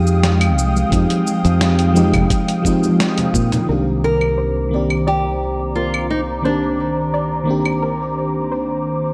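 A dark production sits in a lush hall reverb, giving this short cut from a longer sunset chillout piece a wistful, smooth glow at 87 BPM in straight 4/4, in C minor. A mellow FM electric piano lays down soft, round, full-bodied chords with chorus, cassette-tape colour and delay, while an airy, breathy pad sustains above it, its detuned tone carrying a moving notch and a touch of vintage 12-bit sampler grit. Up front, a punchy fretless electric bass holds the low end, joined by a dusty soul sampler-style kit of cabasa, claves, hi-hat and a medium-tuned snare, all compressed and re-recorded in a large room. Distant, ringing congas played with soft hands and a thumpy electronic kick colour the opening over Fm9, with the kick dropping out at 3.5 seconds. As the harmony shifts to Cm9, a very quiet, gentle pluck with ring modulation and a sub octave begins arpeggios at 3.7 seconds, and a small, fingerpicked nylon-string guitar with fresh strings takes the melody at 4.0 seconds, touched with delay.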